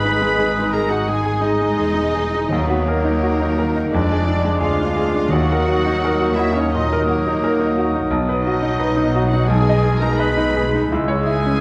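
Classical romantic movement for piano and orchestra, passionate and brooding with a rubato feel, where a clear, up-front grand piano carries the melody beside veiled, con sordino violins, while a hollow flute, a second violin line and a background clarinet add second lines over mellow bassoon, muted violas and very quiet French horn chords, with dark cello and double bass sections beneath and calf-headed timpani sounding from 2.5 s to 6.3 s, all of it set in a wet scoring-stage reverb.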